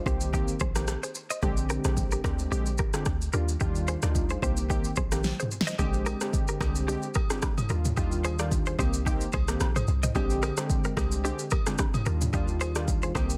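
Afrobeats at 110 BPM in Bb mixolydian, sunny and romantic, this short excerpt cycles through Cm7, Bb13 and Ebmaj9 over a swung sixteenth-note feel, with a dry, dense and heavily limited sound. Detuned sawtooth analog keys with chorus and tremolo carry the accompaniment while a bright, twangy, direct-recorded clean guitar picks a riff through tremolo and tape echo, underpinned by a round, dark FM log drum bass and an up-front deep house kit whose fat snare is soft-clipped. A drum fill at 5.2 seconds leads into the second section at 5.8 seconds, where band-limited, vintage agogo bells and woodblock join quietly in the background.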